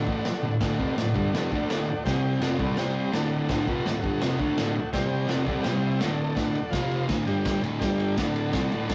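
A rough rehearsal-room recording with a small, reverberant room and saturated grit opens this rowdy, raw garage rock clip, cut from a longer piece. At 166 BPM in a straight 4/4, a thick, double-tracked fuzz guitar sits up front with a low, picked riff that alternates between D and C5 chords. A crunchy breakbeat drum kit comes in at 0.1 seconds, its tight kick, medium-tuned snare, and dark crash and ride cymbals roughened by vintage 12-bit sampler grit and a rolled-off top. Beneath them, a buzzy, overdriven combo organ holds sustained chords with heavy vibrato and breaks into short fills, first at 3.0 seconds. From 6.4 seconds the harmony shifts through F5, D5 and G5 before settling back on D, keeping the mood warm and ragged.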